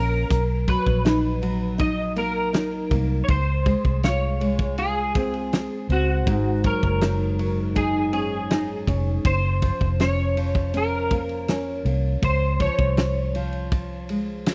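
A loose, straight 4/4 groove from an acoustic drum kit with a fat snare, punchy kick and rolled-off top enters at 0.3 s beneath this dreamy, sunny indie and bedroom pop piece, where a clean, picked electric guitar with ensemble chorus carries the melody over fingerpicked classical nylon-string guitar with subtle chorus and vibrato and a dark, round, foam-muted vintage bass, the whole mix sitting close and dry in a small room with a 1970s studio character.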